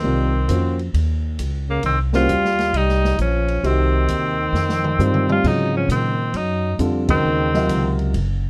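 A swinging 4/4 pulse at 133 BPM drives this short modal jazz excerpt in F phrygian, its mood spiritual and intense. A bright, punchy tenor saxophone carries the melody with vibrato and a forceful, vintage edge, sitting up front beside a mellow, close-miked trombone that plays a second line. Smooth grand piano provides the accompaniment while a woody pizzicato upright bass anchors the low end near the front of the mix. The natural-sounding acoustic drum kit enters at 0.5 seconds with dark cymbals, a medium-tuned snare and a boomy kick, playing a fill from 4.5 to 5.4 seconds before the harmony shifts from F9sus4 to Ab9sus4, and the full band hits an accent at 7.0 seconds. Light reverb and a dark, warm production surround the small group.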